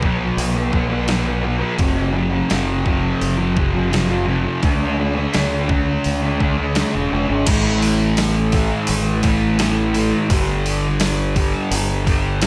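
Shoegaze-leaning dream pop rock at 85 BPM in A major, this dreamy, wistful passage from a longer piece is built on a thick, dark fuzz guitar riff, double-tracked and up front with distortion and lush chorus, moving through B5, F#5 and D5 before shifting to A5 and G5 at 7.5 seconds. Beneath it, a growling fingered electric bass adds bright, punchy overdrive, while a detuned 8-bit digital drum machine supplies a thumpy kick, medium-tuned snare, hi-hat and crash with a tape-warm, small-room character. Light reverb softens the whole blend, and the tuning sits slightly below standard pitch.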